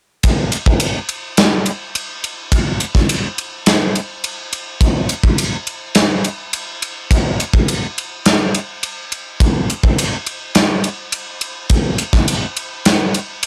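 Rock at 104 BPM in a straight 4/4, this dreamy, melancholic excerpt features only a gated 80s drum kit playing kick, ride and snare from 0.2 to 13.5 seconds, sitting up front with an airy, polished big-room sound, bright cymbals, a medium-tuned snare and a tight kick, all coloured by cassette tape in a home recording with moderate booth ambience.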